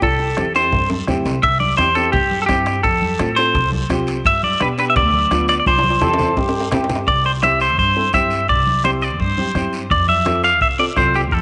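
A twangy, clean electric guitar sits up front and carries the melody in this festive, danceable cumbia excerpt, its picked, compressed tone bathed in spring reverb. It moves at a brisk 170 BPM in 4/4 with a straight feel in C major, over chords that move from C to F to G7 and back. A pizzicato upright bass with steel strings gives a woody low end, while a dark, mellow upright piano fills in the accompaniment. Further back, a raspy guiro, hard-hand congas with a thin skin, and a soft-beater bombo keep the groove, joined by ringing metal-shell timbales until they drop out at 7.0 s, with drum fills marking the phrases. A brilliant, punchy trombone with light vibrato plays a short, forceful second line from 6.0 s, sounding distant and roomy. A moderate plate reverb sets the whole mix in a soft-topped space.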